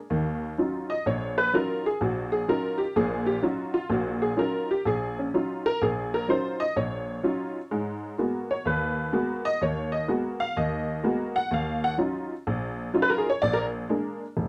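A honky-tonk upright piano, detuned and jangly with a bright, vintage edge and short sustain, plays a smoky, cool solo jazz passage alone from start to finish at a swinging medium pace, sitting up front under close, detailed microphones and light reverb as it moves through minor ninth chords before closing on a dominant seventh in this brief cut from a longer piece.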